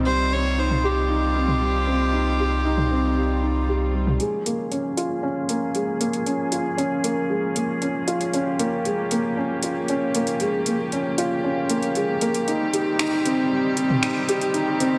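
A felt-muted upright piano sits up front, playing a soft, boxy riff with thick felt and a trail of delay, setting the intimate, cinematic tone of this piano-and-strings electronica cut from a longer piece. It moves at 116 BPM in a straight 4/4 in Bb dorian, with the harmony shifting from Cm to Bbm7 and back to Cm. Early on, a single violin floats an airy, sul tasto melody with its own delay and ends at 3.7 seconds, while a round sine sub bass holds a deep C2. At 4.2 seconds the sub bass drops out and a build-up begins, with a filter sweep running across a distant string quartet that holds smooth, lightly vibrato chords through a low-pass filter. A layered deep house kit of finger snaps, metallic hi-hats and toms carries an overdriven, produced edge, with low-pass filtering on the toms, hats and snare. A moderate, lush hall reverb wraps the mix in a spacious hall.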